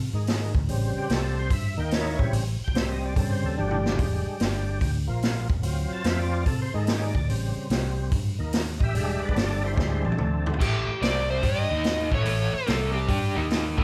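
Swung eighths in 4/4 drive this swaggering, gritty blues rock and southern rock, played by a band live in one room with light reverb. A thick, overdriven tonewheel organ through a slow rotary speaker with chorus vibrato solos in sustained chords, over round, foam-muted fingered bass and a punchy, up-front vintage drum kit with a rolled-off top that adds fills near 3.6 and 9.8 seconds. At 10.6 seconds the organ stops, and a double-tracked, picked electric guitar riff with tremolo enters alongside a dark slide guitar melody, over chords built mostly from power chords.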